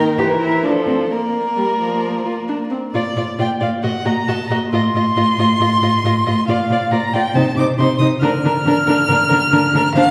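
In a flexible, rubato 4/4, this graceful, lively classical-period string quartet passage, cut from a longer movement, sets a smooth, up-front first violin melody with vibrato over an even, close cello bass, while a focused, more distant second violin traces a second line and a close viola adds expressive, portamento-laced accompaniment, the four rich bowed voices heard from further back in a wet recital hall with vinyl crackle.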